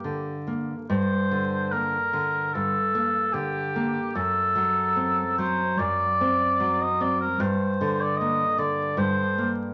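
Rubato at 74 BPM in 4/4, this yearning, solemn romantic duo in G minor sets a warm, distant oboe with light vibrato singing the melody between G4 and Eb5 over fingerpicked nylon-string guitar accompaniment, moving from Gm through D7/F# and back to Gm, the short passage cut from a longer piece and bathed in moderate large-studio reverb with a vinyl crackle.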